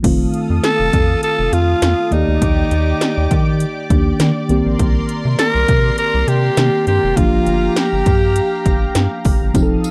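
1980s-style pop at 101 BPM with a light sixteenth-note swing, glossy and romantic, moving through F7, Ebmaj7, Cm7 and Gm7. Punchy electronic drums with a gated snare and metallic hats sit up front beside a rubbery, bouncy square-wave bass, while a mellow FM electric piano and a lush, warbling unison pad, both chorused, fill out the harmony. A raspy, gritty alto saxophone carries the melody from 0.6 seconds with slapback echo, a jingly tambourine appears in the background at 9.5 seconds, and the whole recording sounds dry and close.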